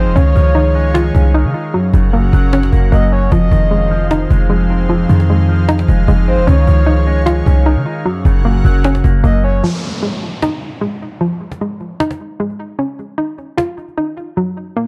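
A half-time trap groove at 152 BPM in 4/4 anchors this brooding, menacing hip hop excerpt in F phrygian, its cajon supplying woody, close hand strikes with faint snares from 0.2 seconds onward. Beneath it, a deep, boomy 808-style bass sits up front with a fast attack and decaying tail, while a dark, clean electric guitar run through an envelope filter and low-pass filter fills out the accompaniment. A hollow, nasal square-wave pluck bounces through detuned arpeggios with chorus and tape echo, and an airy pad holds soft sustained chords behind it. Over the top, a breathy, flute-like synth lead with vibrato, chorus and tape echo carries a quiet second line, circling chords of Dbadd9, Gb and Fm7. At 9.6 seconds the bass, guitar, pad and lead drop out for a break, leaving the pluck and cajon alongside an electronic downlifter, all in a dry, dark mix.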